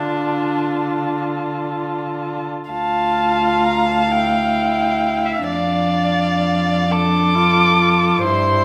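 A muted first violin carries the yearning, melancholic melody high above the ensemble, its veiled tone colored by vibrato and portamento slides. In this slow, rubato romantic movement for string quartet in six-eight, a second muted violin spins a dark inner line, the muted viola offers soft-edged accompaniment from close by, and the muted cello supplies the bass with light vibrato and its own gliding portamento. All four players are heard through the lingering reverb of a recital hall, in a short section cut from a longer piece whose harmony shifts at 5.5 seconds.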